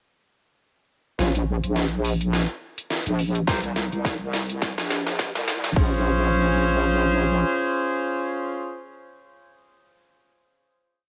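A clear, up-front horn section fires sparse, echoing rootless chord stabs with 12-bit sampler grit and cassette tape color through a filter sweep in this swaggering, funky glitch hop piece at 105 BPM in Bb minor, entering together at 1.2 seconds with a heavy, detuned wobble bass with changing wobble speed and an overdriven dubstep drum kit with a deep snare and swung, edited hats, with a punchy electronic kick arriving at 3.5 seconds to drive the build-up and drum fill into a closing Bbm9 chord at 5.8 seconds, all in a spring-reverb ambience.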